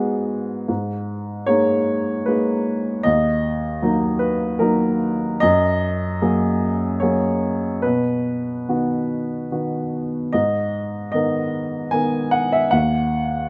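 A lone upright piano, woody and up front with a long, natural sustain, opens this intimate, melancholic fragment of neoclassical minimalist music, cut from a longer piece. In G# minor at around 75 BPM in 3/4, the playing moves with rubato and uneven beats across a span from D#2 to G#5, tuned slightly low to A4 = 436 Hz. The harmony drifts from G#m7 and G#madd9 through D#m, F#add9 and B, returns to G#madd9 and settles on D#m. The dry, close sound leaves the instrument's warm body in plain view until the fragment ends at 13.5 seconds.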